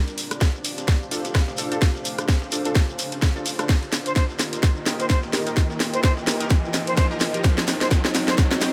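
An overdriven, tight electronic kick drives this gritty, aggressive bass house build-up alongside a cracking garage drum kit of hi-hat, rim click and snare, a very quiet, pitched-up breakbeat sampler-style kit, a grainy shekere, an electronic riser, a dark analog pad with chorus, phaser, filter sweep and sidechain pumping, a breathy, chorused pad, and a bold, punchy orchestra-hit-like synth stab entering at 1.1 s with its own filter sweep, delay and pumping, before a bright, reedy jazz flute with vibrato and delay holds a C5 from 4.1 s over Dm, Eb and Cm chords.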